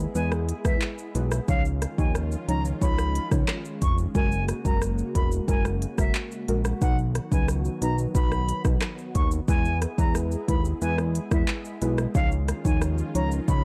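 A fat, detuned sawtooth bass sits up front in this sunny, summery dancehall excerpt at 90 BPM in B major, joined at 0.2 seconds by an electronic afro-pop kit with a deep kick, crisp hats, handclaps, rim click and shaker. Soft, warbling vintage chord stabs with a dark chorus tint and a lush, airy unison pad, set in the background with phaser and sidechain pumping, carry the harmony through E, C#add9, F#add9 and B. Above them, a pure, distant concert flute with vibrato and delay sings the melody from 0.1 seconds, all within a dry, dark production.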